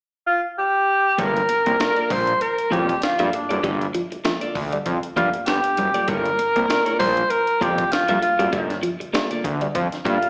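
A breathy alto saxophone with light vibrato opens this cool, driving funk excerpt alone at 0.3 seconds, playing a jazz-style melody touched by slapback echo. At 1.2 seconds the band enters on a Gm9 chord with a loose sixteenth-note swing: a fat, detuned sawtooth bass sits up front with a filter sweep; a gritty, pitched-up breakbeat kit brings a thumpy kick and high-tuned snare; a clean, compressed electric guitar adds accompaniment in the background through spring reverb; and a dark hollow-body guitar plays a low riff through a phaser, both guitars carrying slapback echo. The whole performance sounds like a live gig heard through a venue's PA, with club reverb and a small-speaker quality.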